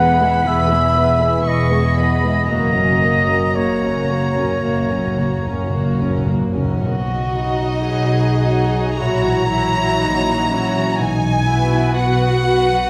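In a rubato 4/4 at 52-63 BPM, this serene, lyrical slow romantic movement for symphony orchestra in B major sets an intimate, sul tasto violin section melody with soft-attack vibrato over a background second violin line, an up-front oboe that sings until 6.3 s, shadowy violas, warm sustained French horn chords, a ringing, thumb-plucked harp in arpeggios, and dark cellos and double basses, while medium-mallet timpani add a fill from 2.5 s, the whole ensemble heard in a resonant recital hall.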